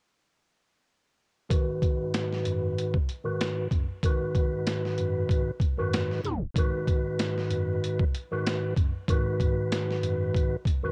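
A percussive tonewheel organ sits up front in this dark, gritty boom-bap hip-hop excerpt, its soft, flute-like tone carrying key click and third-harmonic percussion through a fast-spinning rotary speaker and a cassette-tape coloring. From 1.5 seconds a filter sweep shapes the organ through the first section, and a tape stop at 6.2 seconds pulls the track into the second section at 6.6 seconds. Beneath it, a mellow tine electric piano holds down the bass in the background, its clean, warm sound heard through built-in speakers and thickened by transformer saturation. The sampler-style drum kit sits up front and close, with a thumpy kick, a medium-tuned snare and hi-hat, compressed, pitched down and re-recorded in a small room with a tape-warmed grit. The swung groove and light reverb give the whole piece the hazy feel of a home cassette recording.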